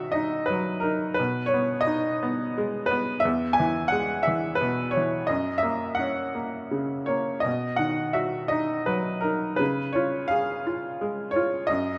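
Hopeful and sunny, this lyrical classical excerpt for solo upright piano moves in a rubato three-beat lilt. The piano sounds brilliant and woody, slightly detuned, with a short sustain, and it sits up front across its 12 seconds, ranging from low bass notes to a glinting upper register. A moderate recital-hall reverb gives the close, natural tone a sense of space.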